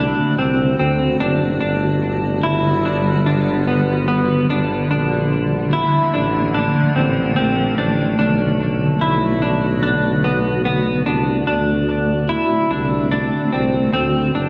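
A straight, unhurried 4/4 pulse carries this dreamy, blissful dream pop excerpt, cut from a longer piece. A mellow tuba holds the bass with light vibrato, sounding punchy yet smooth on top. Over it, a dark, clean semi-hollow electric guitar plays fingered, compressed arpeggios up front, coloured by lush chorus and dub echo. A granular cloud pad sustains blurred, detuned chords with a slow attack, long release and a moving notch, its texture evolving like mist through its own built-in reverb. All three parts play from 0.0 to 14.5 seconds through D7, Gmaj7, Bbmaj7 and Bm7 before returning to D7, and a wet spring reverb gives the whole echo-heavy mix a soft, floating haze.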